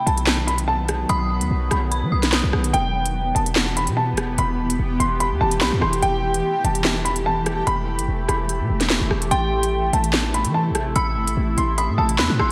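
Drill-flavored hip hop with a cold, tense mood, moving in a half-time feel over a dark minor harmony. A clear, woody upright piano carries the melody high in its register, its action noise audible and its tone softened by a low-pass filter and trailed by diffuse ambient delay. An eerie, inharmonic synth bell sits in the background with chorus and tremolo, sounding at the start, dropping out at 2.7 seconds and returning at 9.3 seconds. Underneath, a cloudy granular pad holds sustained chords that blur and evolve through a lush chorus and its own reverb. A punchy, heavy 808-style bass and an up-front electronic drill kit, with a sharp snare, crisp hi-hats, handclaps and rim clicks, enter just after the opening. The mix is dreamy and soaked in hall reverb, and this excerpt is cut from a longer piece.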